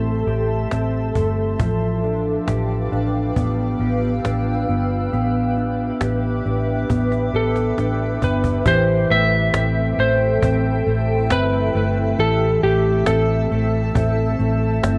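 Dream pop with an ethereal, hazy mood, cut from a longer piece, where a cloudy, evolving granular pad holds blurred sustained chords over dark clean electric guitar arpeggios with chorus and delay, a round, foam-muted vintage electric bass sitting up front and a snappy, close, dry cajon that plays a fill from 6.9 seconds before a slightly broken-up slide guitar, played with fingerpicks, carries the melody from 7.4 seconds, all under light reverb and the warbling pitch drift of worn cassette tape.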